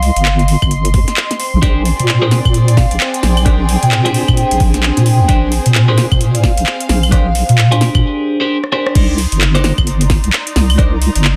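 UK garage in a bouncy, late-night two-step groove at 131 BPM with swung sixteenths, where a deep, wobbling square-and-sine bass sits up front under an overdriven garage kit of woody snare, metallic hats, claves, handclaps and rim clicks, a knocking electronic kick from 0.6 seconds, a ringing vibraphone melody with slow motor vibrato and digital delay until 7.8 seconds, twangy twelve-string electric guitar stabs through a phaser from 1.6 seconds, and a lush bowed string section pumping alongside a warbling vintage pad in the background over Cm and Bb13, before a break and drum fill give way to a drop on Cm9 at 9.0 seconds in a dense, dry, heavily limited mix.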